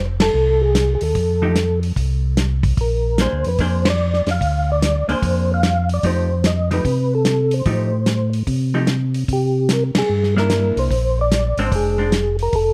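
Soul jazz organ trio music, soulful and swinging at 148 BPM in 4/4 with a swung eighth-note feel, moving through F7, Bb9, F9 and C9 in this brief cut from a longer piece. A percussive tonewheel organ carries the melody between G4 and F5, its soft, flute-like tone colored by second-harmonic percussion, chorus vibrato, a slow rotary speaker and plate reverb. A second, mellow tonewheel organ holds down the bass from F1 to C3, round and lightly overdriven with its own chorus vibrato and slow rotary swirl. The drum kit enters at 0.2 seconds with hi-hat, kick, snare and ride, sounding dry, muffled and lo-fi with dark cymbals and a tight kick, while a clean, picked hollow-body jazz guitar adds compressed, dark accompaniment from 1.4 to 12.1 seconds. The band hits accents together at 0.1, 3.8 and 9.9 seconds, and the close, detailed recording keeps the organs and drums up front in a light reverb.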